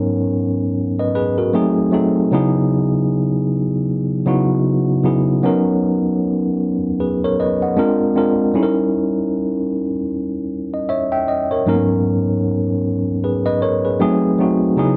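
A worn, slightly out-of-tune tine electric piano plays alone through this relaxed, soulful R&B excerpt, its lightly overdriven tone heard through built-in speakers and sitting up front in a dry, close 1970s-style studio sound with light reverb. At 77 BPM in 4/4 with a swung sixteenth-note feel, it moves through rich minor-eleventh, altered dominant and major-seventh chords, opening on G#m11, passing through C#m11 and Bmaj7, and returning to G#m11 at 11.7 seconds. Its range spans G#2 to G5, and the tuning rests a touch below standard pitch at A4 = 436 Hz.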